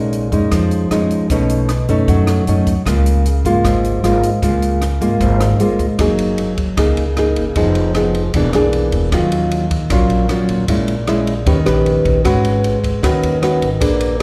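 Up front in the mix, a thumb-plucked nylon-string guitar with audible finger squeak carries the sophisticated, relaxed harmony of this bossa nova excerpt at 154 BPM, moving from D-flat major to F-sharp major at 6.0 s through rich chords such as Bbm7, Cb9, F#69 and G#m7. A woody, thumpy pizzicato upright bass sits beneath it, while a compact cocktail drum kit, dry and natural, with dark cymbals and a punchy kick, adds hi-hat, ride and rim click from 0.1 s. The recording has the moderate reverb of a church or concert hall.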